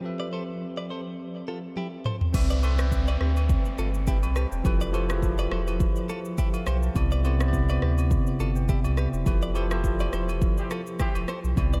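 A bell-like tine electric piano opens this sunny, breezy afrobeats excerpt at 104 BPM, playing bright, clean chords over Fmaj9#11 and Cmaj9, with a twangy, compressed clean electric guitar riff joining almost at once through a diffuse ambient delay. A drum fill at 1.8 seconds brings in an electronic afro-pop kit with a deep kick, rim click, shaker, toms and crash, and at 2.3 seconds a round, up-front sine sub bass, background agogo bells and a faint electronic downlifter arrive. A band accent lands at 9.3 seconds and carries toward the close, where a punchy, tight horn section with light vibrato briefly enters at 10.6 seconds, all of it soaked in a dreamy cathedral reverb.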